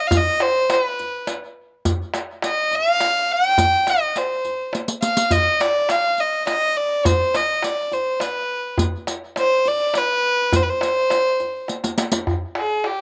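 A Persian modal ensemble piece in a hypnotic, longing triple metre, cut from a longer performance. A single up-front violin carries the melody with a nasal, reedy gut-string tone and an airy bow in period style. Beneath it, a tight, up-front tombak and a close riq with bright jingles under soft hands keep time, with short drum fills at 4.7 and 11.7 seconds, all in a dry, open-air sound.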